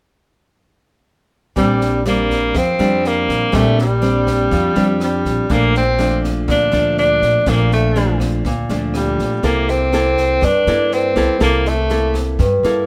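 This romantic, sophisticated bossa nova fragment opens at 1.6 seconds with the full quartet entering together at a straight 122 BPM in Bb major. A clear tenor saxophone carries the melody up front in a low, intimate register, its vintage jazz-style tone shaded by light vibrato and scooped notes. Beside it, an equally forward nylon-string guitar is fingerpicked in a bright classical manner. An upright bass supplies a woody pizzicato foundation on steel strings, while a jazz drum kit recorded in a small room adds a boomy kick, a rim click and a high-tuned snare. The harmony moves from Bb69 to a rootless Gm9/Bb and then to C13 under light reverb. The saxophone drops out at 12.2 seconds and the drums at 12.7 seconds, while guitar and bass carry the section on until 12.9 seconds.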